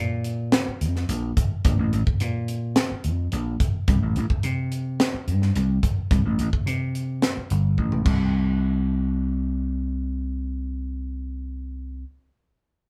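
Recorded live in one room with moderate studio reverb, this bright, slick fragment of electric jazz fusion moves at 108 BPM in a straight 4/4. An amped, growly vintage slap bass sits up front and carries the low end throughout. It is joined at 0.2 seconds by an airy, polished acoustic fusion drum kit with a punchy kick, high-tuned snare, dark crash cymbal, hi-hat and toms. The drums close the opening stretch with a fill from 7.8 seconds and stop at 8.2, leaving the bass alone as a new section begins.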